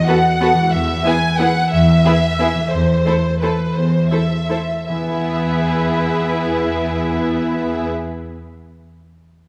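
A rubato 3/4 pulse sways through this short cut from a festive, elegant classical ballroom waltz: an up-front violin section sings a lush, vibrato-laden melody over mellow, ringing harp arpeggios, a distant second violin line and viola accompaniment, and a smooth cello bass that enters at 0.7 s, with the pace slowing from 2.2 to 4.9 s inside a reverberant church or concert hall.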